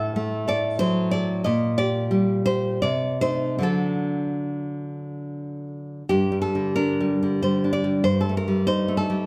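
A fingerpicked nylon-string guitar with fresh strings plays up front alone in this brief, wistful and melancholic romantic classical fragment in G minor, moving in a rubato 3/4 between about 68 and 96 BPM, with audible finger squeaks and a moderate recital-hall reverb, before shifting to a new section at 6.1 seconds that opens on G minor.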